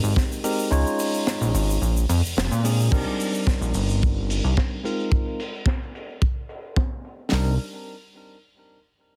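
A glossy, nasal chorused synth bass sits up front in this sensual, groovy nu-disco clip, cut from a longer piece, at 109 BPM in 4/4 with a straight feel in C minor, tuned to A4 = 435 Hz. The bass blends pulse and sawtooth tones with pulse-width modulation and a fast-attack filter pluck that then sustains, giving it a retro sheen. A clean, direct tine electric piano carries the accompaniment with sidechain pumping and delay. A tight funk kit supplies a dry, polished kick and high-tuned snare. A second, airy layer of crash, hi-hat, shaker and snare runs through a low-pass filter. The chords move from Abmaj9 through Db and Bb9 to Cm9 and Bb9sus4. The kick drops out at 0.7 s, the band hits an accent at 2.4 s, and from 2.9 s a filter sweep runs over the drums. Light studio reverb and heavy compression give the whole a radio-ready sound.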